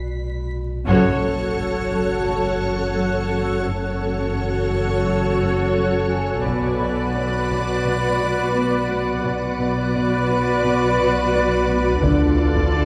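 A veiled, churchlike haze with faint vinyl crackle frames this eerie, ominous suspense-film excerpt, where a metallic, warbling drone with chorus and phaser, a background celesta shimmer and a brief high violin texture open the piece before muted, con sordino strings (violins carrying the melody and a second line, violas, cellos with a riff and bass, and double basses) enter at 0.9 seconds along with very quiet taiko hits, joined at 1.1 seconds by a pure, organ-like pad, over chords that move from F#m to Bm to Dm.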